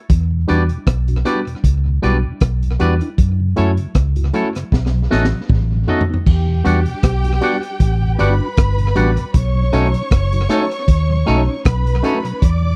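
A dry, close 1970s-style studio sound frames this longing, bittersweet lovers rock reggae excerpt in E dorian at 78 BPM, where a gritty, saturated breakbeat kit with tape echo and a round, foam-muted fingered bass sit up front, a barky, lightly overdriven tine electric piano and a very quiet, flute-like tonewheel organ fill out the chords, a twangy electric guitar with spring reverb adds bright stabs, a drum fill arrives at 4.7 seconds, and a distant, lush bowed string section enters with a second line at 6.3 seconds.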